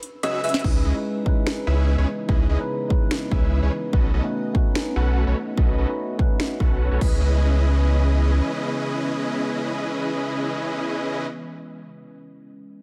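Bittersweet and lush, this half-time future bass excerpt opens on a short break where a round, tine-like synth pluck and a dreamy lead flicker for under a second over a huge, detuned supersaw riff that carries on to 11.3 seconds. A punchy, up-front kick and a deep, saturated sub bass arrive at 0.6 seconds with a mellow electric piano, and a trap kit with a sharp snare, metallic hats, snaps and crashes runs from the very start until about 7 seconds, while an ethereal pad sits in the background. Sidechain pumping runs through the synths, dub echo trails the pluck, lead, supersaw and piano, a phaser colours the piano and pad, and light digital ambience surrounds the chords, which move from C#m9 to B9 and back.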